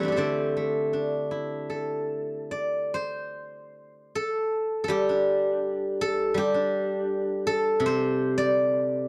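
A steel-string zither, played alone with fingerpicks, opens this short cut from a longer piece of Chinese traditional music, its silvery, ringing tone sitting up front in the D shang mode. The mood is serene and flowing, with a free rubato pulse drifting between 69 and 86 BPM in 4/4, and a new passage begins at 3.4 seconds. The close, dry 1970s-style studio sound carries a light touch of reverb.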